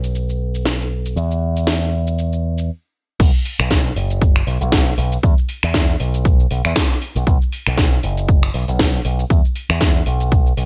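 Nu-disco with a feel-good, sunny mood, this short excerpt rides a swung sixteenth-note groove in four. A picked electric bass run through an envelope filter sits up front, bright and punchy with a direct, amped tone, while a house drum kit of crash cymbal, finger snaps, hi-hat, shaker and a cracking snare carries metallic hats and a gated reverb. After a brief stop from 2.7 to 3.2 seconds, the drop arrives and an electronic kick drum enters, layered and tape-warm with a punchy thump, playing until 10.4 seconds. The bass and house kit continue through to the end at 10.7 seconds. The overall sound is dry and bright, in a 1980s-style digital production.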